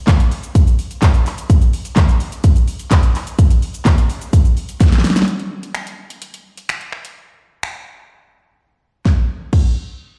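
Heard through a big sound system in a bare stone room with light digital reverb, this energetic, driving pop fragment at 127 BPM in a straight 4/4 is built on an up-front, layered electronic drum kit with a punchy kick, fat snare, metallic hi-hats, crash cymbal, finger snaps, handclaps and shaker, joined by a very quiet, grainy acoustic egg shaker until 5.3 seconds, just after a drum fill at 4.8 seconds, before the drums briefly drop out at 8.6 seconds.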